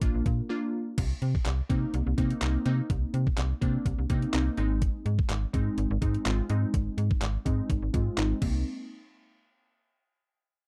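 Energetic and driving, this dance-pop clip opens with a very quiet, phased wavetable pluck melody that lasts under a second, while a crystalline, detuned and full-bodied pluck with chorus and sidechain pumping carries the chords through a long filter sweep from 1.0 seconds. Up front, a snappy, metallic-edged FM bass with a mellow decay pumps beneath an overdriven, sampler-style 8-bit drum machine of thumpy kick, handclaps, hi-hat and crash. The sound is dry and close, and the chords drop away at 8.7 seconds.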